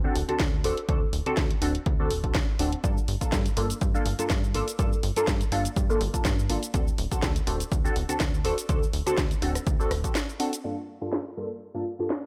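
A funky polysynth comp sits up front in this sensual slice of filtered disco house, its detuned, wave-folded sawtooth tone mellowed by chorus and phaser and pumping against the kick under a low-pass filter. Beneath it, a plucky analog bass with a fast-attack filter pluck and tube saturation pumps through the low end until 10.1 s. A layered house kit of hi-hat, rim click, shaker and cracking snare enters at 0.2 s, the hats and percussion pumping and filtered, and the punchy, tape-warm electronic kick joins it at 0.4 s. Light digital reverb gives the small-room drums some air, and the groove swings gently in 4/4 over chords moving between D7 and Gm7. From 10.6 s a filter sweeps across the drums and the polysynth as this cut from a longer track closes.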